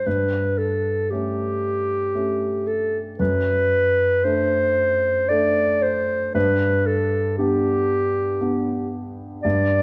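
A mellow clarinet sings the melody up front from the very start, over a dark concert grand piano whose deep bass carries the accompaniment through A7/G and D7/F# before coming to rest on G. This melancholic, solemn romantic duo moves in an unhurried three-beat lilt with rubato, and it is a short fragment lifted from a longer classical piece. A moderate recital-hall reverb surrounds both players, and the sound comes through worn, warbling cassette tape with a drifting pitch.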